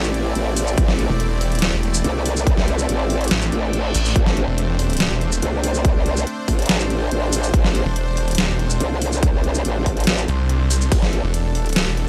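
A snarling, detuned sawtooth bass, distorted and bright, drives this aggressive, chaotic slice of half-time wobble dubstep from 1.1 s, alongside a wobbling, formant-filtered growl bass with overdrive and chorus. Up front, a punchy overdriven electronic kick enters at 0.8 s beneath a layered drum kit of deep snare, hi-hat, ride cymbal and shaker, all re-recorded in a small room. Further back, a lush supersaw pad with a sub octave holds sustained chords under sidechain pumping, and a brief reverse cymbal sweeps in at 3.5 s, all in a dry, close mix.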